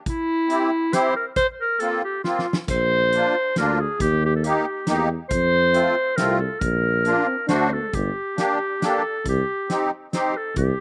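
Alpine folk from an alpine dance band, this jolly, bouncy fragment moves in a lilting three-beat metre. A clear, vintage-toned clarinet carries the melody up front in a classical style, touched by slapback echo, while a reedy musette accordion with shimmering tuning supplies the accompaniment, also with slapback echo. A loose acoustic drum kit with a punchy kick, fat snare and dark cymbals keeps time and plays a fill at 2.3 seconds, after which a mellow tuba enters at 2.7 seconds with light vibrato, a soft attack and a smooth top. A euphonium with vibrato adds a brief, close-miked second line in the background at 7.0 seconds, just as the tune turns toward a new section built on minor chords. The sound is dry and open-air, recorded outdoors with little reverb.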